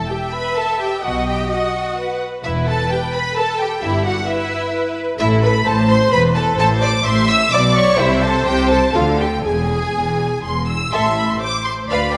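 A quick classical-period movement for string orchestra, this restless, dramatic passage is cut from a longer piece and moves in a flexible, rubato triple metre. The violins open together, one section carrying the expressive, vibrato-rich melody high above while a second violin section sings a lush line beneath it. The violas supply a smooth, even accompaniment from the start, and at 1.0 s the cellos and double basses join on the bass, the basses sounding focused and close. The harmony shifts restlessly through minor chords and dark colourings, settling toward A minor as a brief new section begins at 10.9 s. A generous scoring-stage reverb surrounds the bowed ensemble, lending the strings a spacious, cinematic bloom.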